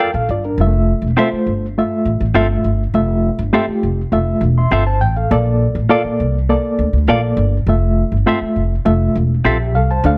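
A straight 4/4 pulse at 101 BPM drives this danceable soul excerpt in F major, where a woody, growly pizzicato upright bass sits up front beneath a reedy, worn, slightly out-of-tune electric piano with tremolo and a compressed, hollow-bodied electric guitar playing clean fingered stabs until 9.6 seconds, the harmony moving between Bbmaj7 and Fmaj7 in a small room with light reverb and a dark, warm production.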